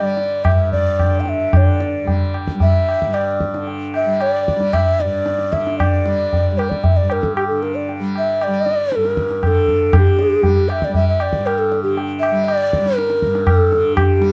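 A breathy, hollow bansuri and a buzzing, shimmering tanpura drone open this meditative Hindustani excerpt in raga Shivaranjani on G, joined at 0.2 seconds by up-front, low-tuned tabla with a short ring, in a straight 4/4 that speeds up from 110 to 121 BPM under light reverb and a dark production.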